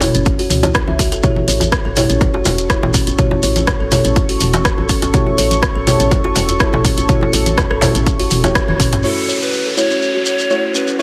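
Deep, nasal chord stabs with a filter sweep and sidechain pumping open this warm, earthy afro house excerpt at 123 BPM over F#m7 and A7, joined by a round, woody FM bass, an overdriven house drum kit, and background congas, djembe and grainy shekere, while a hollow, ringing kalimba plays arpeggios, a punchy electronic kick sits up front, a smooth analog pad eases in at 2.2 s, and after a drum fill a breathy, bright pan flute melody and an electronic downlifter arrive at 9.0 s as the kalimba gets its own filter sweep.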